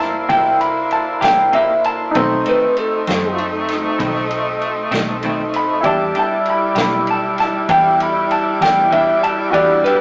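A slightly broken-up, compressed electric guitar played through a small old amp carries the second line over a mournful, smoky slow blues in E minor. It moves at 65 BPM in a straight 12/8 feel, with a harmonic tremolo colouring its picked tone. Beneath it, a woody upright piano with audible action noise sits in the background, while a mellow saxophone section and a smooth tonewheel organ, turning with chorus vibrato and a slow rotary speaker, hold sustained chords. A clean, picked electric guitar with tremolo joins at 0.3 s as quiet accompaniment. A dark, foam-muted fingered bass and a vintage drum kit with punchy kick, medium-tuned snare and dusky ride cymbal anchor the groove. The harmony moves from C7 to B7b9 at 2.1 s and settles on Em7 at 5.8 s, all heard through the rough, small-speaker sound of a rehearsal room with a close, wet booth ambience in this fragment cut from a longer piece.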